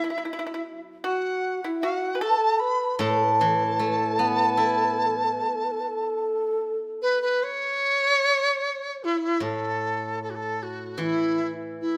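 Pastoral and festive, this excerpt from a longer Chinese traditional chamber piece moves in a rubato 4/4 around 76 BPM in an A gong mode. A large bamboo dizi carries the expressive melody up front with a buzzing membrane, an airy tone and vibrato. A breathy, hollow low xiao and a dry, percussive fingerpicked pipa shape a second line until 7.0 s. Throughout the 12.0 s, a silvery, ringing steel-string zither supplies bright accompaniment beneath them, all set in a moderate recital-hall reverb.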